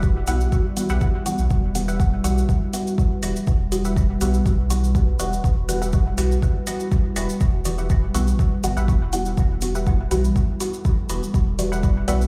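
A hazy, nocturnal dub techno excerpt with a big, reverberant sound, as if played through a large system in a bare room, rides a swung groove built on a tape-warm electronic kick up front, overdriven metallic hats and a grainy, bright cabasa. A round sine sub bass pumps beneath a dark, detuned sawtooth pad with 12-bit sampler grit, which holds a single Emadd9 chord in the background throughout. Two filtered dub chord stabs come in at 0.3 seconds and repeat in dub echo: a lower, nasal one with a moving notch and phaser, and a higher, muted, chorused one with a short decay.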